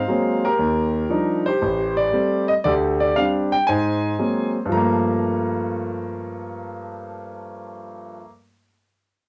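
An Ab9 chord on a clear, natural-sounding concert grand piano, placed up front, opens this cool, late-night solo jazz fragment in G minor, swung at 116 BPM, its deep bass and long sustain moving across A1 to Bb5 through Ebmaj9, Am7 and D7sus4 before arriving on Gm9 at 4.7 seconds, heard in a wet booth ambience on a home cassette recording.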